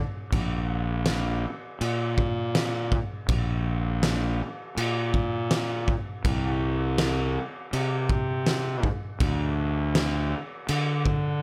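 A dry, up-front mix frames this brooding, hazy rock excerpt in a shoegaze and dream pop vein at 81 BPM in straight 4/4, where a growly, overdriven fuzz bass fingered between Bb1 and D3 rides alongside a loose indie drum kit with a punchy kick, fat snare and dark crash cymbal in a pumping studio room, both entering at 0.3 seconds.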